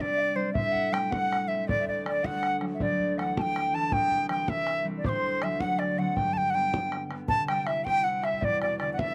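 A reedy wooden flute carries the melody from the first moment, sitting close and up front with an airy vibrato, tongued notes and a slapback echo. Alongside it, a very quiet, hollow wooden whistle adds a pure, straight-toned second line with a soft attack, while a concert harp supplies fingerpicked, ringing accompaniment. A tight, damped bodhran joins at 0.6 seconds, giving this bright, rollicking Celtic jig its drive at 107 beats per minute in 6/8. The harmony moves through suspended and seventh chords such as Am7, Dsus4 and D7 before settling on G, and a new section begins at 7.3 seconds on C. The sound is dry and open-air, recorded outdoors, and the passage is cut from a longer piece.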